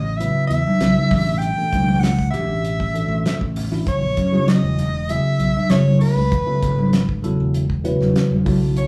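A straight 4/4 groove from a damped 70s drum kit, with a fat snare and a tight kick under a dark, rolled-off top, drives this intense, funky piece of electric jazz fusion, cut from a longer performance. A fingered electric bass sits low and direct from the very start, and congas join at 0.7 seconds, ringing and distant in the background with soft hands. A worn, slightly out-of-tune tine electric piano treated with phaser enters at 0.2 seconds alongside the drums, laying down suspended chords that move from B9sus4 through A9sus4 and F#13sus4 to Esus24. Over them, a close-miked soprano saxophone carries a jazz-style solo melody, warm in tone, with vibrato, subtone and scooped notes. The band sounds as though it is playing live in one room, wrapped in a wet, large studio reverb.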